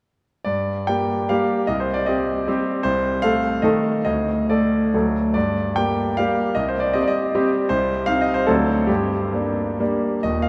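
Capricious and nostalgic, this brief classical fragment cut from a longer piece is a romantic triple-time dance with dotted rhythms and flexible rubato, played by a clear, natural, up-front grand piano alone from 0.4 to 10.5 seconds across a span from Eb1 to G5, its minor-key harmonies cycling through diminished and dominant colours and settling home as a vast cathedral reverb lets each chord hang and echo.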